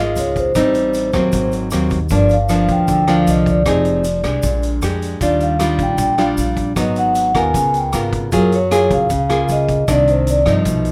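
Light reverb gives this short cut from a longer bossa nova piece a relaxed, sophisticated polish at 154 BPM in straight 4/4. Soft-mallet vibraphone, ringing and mellow with its motor off, carries the melody over an up-front, fingerpicked nylon-string guitar and a woody pizzicato upright bass, moving through chords such as Db6, Ebmaj9 and Gbmaj9. From 0.2 seconds a gritty, saturated vintage drum kit adds hi-hat, tight kick and rim click, while a grainy tube shaker sits in the background.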